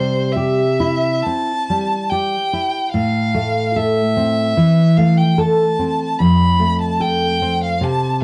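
A fingerpicked nylon-string guitar and a clear, focused bowed violin begin together at 0.0 seconds in this short, lyrical romantic duo, set in C major at 73 BPM with a free, rubato feel. The full-bodied guitar carries the accompaniment through C, Am and F, while the lone violin sings the melody with vibrato, both sitting up front. Light reverb and a dark, warm production give the passage a gentle glow before it cuts off at 8.2 seconds.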